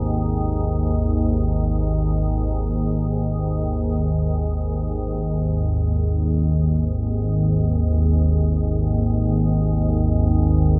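An ominous, unsettling dark ambient drone in free time and Ab major opens on an up-front, organ-like drone in the low register, calm and evolving, built from detuned unison sine tones with slow attack, long release, ensemble chorus and its own reverb, holding an Ab5 chord. Beside it, a very quiet quartz singing bowl rings a pure, meditative C5 with slow beating, struck with a suede striker and set in a boxy small room, until it stops at 5.3 seconds. From there, a filter sweep reshapes the drone through to 10.8 seconds, the whole dreamy mix soaked in a plate reverb with a 3.4-second tail in this fragment cut from a longer piece.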